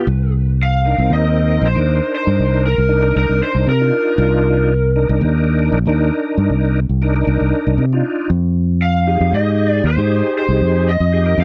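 A bright, reedy tonewheel organ with key click, chorus vibrato and a slow rotary speaker opens this smoky, soulful straight-eighth soul blues fragment, joined at once by a punchy, up-front fingered electric bass, while an overdriven, lo-fi lead guitar through a small cranked amp sings a picked melody from 0.6 to 5.2 seconds and returns at 8.8 seconds, shortly after the harmony moves from Cm7 to Fm7, all captured in a dry, close 1970s-style studio sound.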